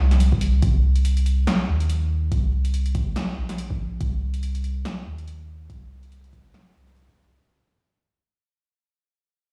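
A soft, round dub sub bass sits up front from the start, holding sustained notes between Bb1 and Eb2 with a fast attack and a tone that blends triangle and square wave. This short cut from a longer deep dubstep piece moves at 142 BPM in 4/4 with a half-time feel and 16th-note swing, and the mood is meditative and heavy. A deep house kit of hi-hat and a punchy snare, overdriven and re-recorded in a small room, comes in at 0.1 seconds. An overdriven electronic kick drum with a deep, layered sound, also re-recorded in a small room, joins it at 0.3 seconds. The whole track sounds as if played on a big sound system in a bare stone room, with light reverb and vinyl crackle, and it fades out from 0.6 seconds to the end at 7.4 seconds.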